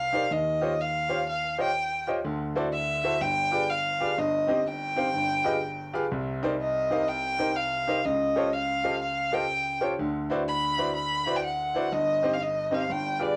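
Swung eighths at 124 BPM in 4/4 carry this soulful, fervent gospel passage in C minor, cut from a longer piece, with a dark, woody bowed violin singing the melody with vibrato over a clear, intimate baby grand piano whose action noise can be heard. Both instruments have a cassette tape coloring and play together throughout the 13.4 seconds, the piano moving through rich harmonies like Eb13, G7b9 and A7alt/C# before settling on Cm/G. It is a home cassette recording in a small room with moderate reverb and a muffled top end.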